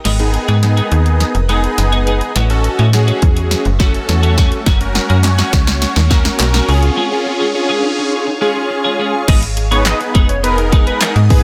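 A lightly reverberant, punchy dance-pop excerpt at 104 BPM in G# dorian, bittersweet yet energetic, where an up-front house kit with a drum fill, snappy FM slap bass, a fat detuned sawtooth polysynth, a twangy twelve-string electric guitar riff and a blurred granular pad build over G#m, A6, F# and C#, adding a background riser from 3.3 s and hollow group handclaps from 5.2 s before a break at 7.0 s gives way at 9.3 s to a drop led by a retro, ring-modulated, octave-doubled lead.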